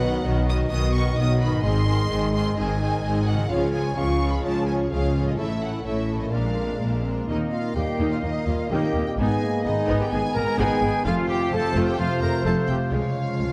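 A straight 4/4 pulse at 128 BPM drives this soaring, adventurous cinematic cue, cut from a longer piece. A lush, vibrato-rich violin section carries the melody over a second violin line, a mellow clarinet, background violas, very quiet horns and bright trombones holding sustained chords, ringing fingerpicked harp arpeggios, and a bass of focused double basses and cellos. At 7.3 s the music settles into Eb mixolydian as an airy, close-miked flute adds another line and a dark trumpet section punctuates with stabs, all within a moderate scoring-stage reverb.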